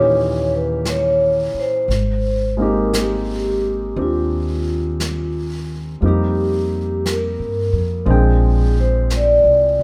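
This jazz ballad excerpt moves at a slow 58 BPM in 4/4 with a gentle swing on the eighth notes, and its mood is intimate and tender. A mellow, vintage-toned vibraphone played with soft mallets carries the melody between F4 and D5, its metallic ring colored by a slow motor vibrato and a band-limited sheen. A concert grand piano with a deep, natural low end supplies the accompaniment across a broad span from Bb2 to G5. Sitting up front, a woody, growly upright bass plucks the low line between Ab1 and G2. At 0.9 seconds a brushed drum kit enters quietly, its snare and hi-hat heard in a small, natural-sounding room. Light reverb surrounds the ensemble as the harmony moves through Eb7b9, Abmaj9, F9sus4 and Bb13.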